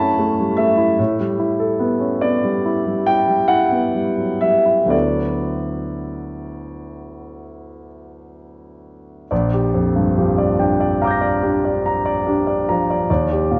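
Moving in 9/8 with free, elastic rubato, this slow impressionist solo piano piece drifts by in a serene, hazy mood. A warm concert grand sits up front, with deep bass, an open tone and long sustain ringing through chords such as F#m7, A9sus4 and D69. At 9.3 seconds the harmony shifts into a new section, moving to Bb6 and then Ebmaj7 at 13.1 seconds before the fragment is cut off from a longer piece at 13.6 seconds. A generous scoring-stage reverb surrounds the instrument. The sound carries a worn cassette-tape character, with warbling pitch drift and dulled highs that deepen the dreamy atmosphere.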